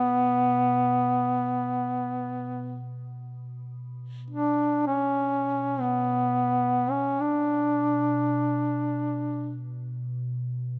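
Caucasian folk lament in free time and B minor, solemn and full of longing, cut from a longer piece. A mellow duduk carries the melody up front in a solo folk style, moving between B3 and D4 with soft attacks, vibrato and scooped notes until 9.6 seconds. Beneath it, a glassy FM pad holds a drone on B2 at a much lower level, its vintage, ethereal tone warbling with ring modulation, ensemble chorus and built-in reverb. The pad's slow attack and long release let it linger alone until 10.8 seconds after the duduk falls silent. A light reverb surrounds the whole.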